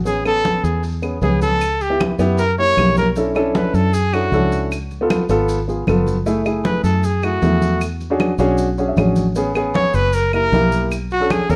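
A round, foam-muted fingered electric bass opens this sunny, danceable Afro-Cuban jazz cut at 155 BPM in A major, joined at 0.1 s by a clear, close-miked trumpet soloing with light vibrato in plate reverb, a dark upright piano with audible action noise that adds a fill at 8.6 s, ringing congas and grainy maracas in the background, with woody claves entering softly behind them at 0.3 s, all heard through the warbling pitch drift of worn cassette tape.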